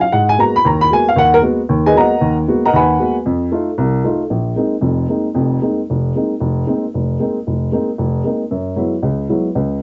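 Jazz excerpt for solo upright piano, dark and woody, hypnotic and spiritual in mood, swinging briskly in 4/4 as it moves from Abm9 and F7 into Bb9sus4 and Gb9sus4, with the piano up front and given a vintage cassette-tape softness in a small wet booth, where a home-recorded sound, dulled above 7.8 kHz, carries a faint mains hum.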